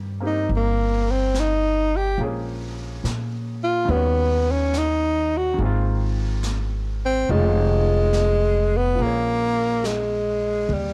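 A late-night, intimate jazz ballad unfolds at a slow swing in 4/4, heard here as a short cut from a longer piece. A breathy, close-miked tenor saxophone carries the solo melody up front with a warm vibrato, entering just after the start. Beneath it, a pizzicato upright bass on gut strings sounds woody, dark and thumpy, while a bright upright piano with brilliant, polished tone and short sustain comps the changes from Cm7 through an Eb7alt to Ab69, colored by cassette tape. A vintage brush drum kit sits far back in a natural studio room, its medium-tuned snare, hi-hat and toms rolled off at the top and also carrying a cassette tape coloring. The drums close the passage with a fill at 10.7 seconds, all of it set in studio reverb with the homespun character of a home recording on cassette.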